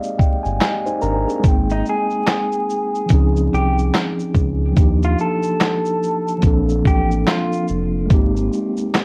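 Lo-fi hip hop with a mellow, nostalgic swing, this short cut opens on a tine electric piano fill muffled by cassette tape, together with a gritty, compressed sampler-style drum kit of thumpy kick, snare, hi-hat, shaker and handclaps; a deep, round analog bass with transformer saturation from 0.5 seconds; and a slightly broken-up, picked electric guitar melody through a small old amp with spring reverb from 1.7 to 7.7 seconds, the whole mix steeped in warbling worn tape, vinyl crackle and light reverb over drifting maj9 chords.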